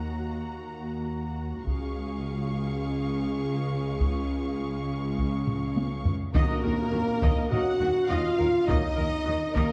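A dark, warm scoring-stage sound frames this majestic, adventurous epic orchestral cue at 103 BPM, where woody violins carry the melody over a lush second violin line with portamento, smooth violas, present French horn chords and a clear cello and double bass low end, as hard-stick taiko drums enter at 1.7 seconds, bright cymbals and tam-tam arrive at 4.0 seconds, and a very quiet, mellow trombone section and a background trumpet stab join the band accent at 6.3 seconds.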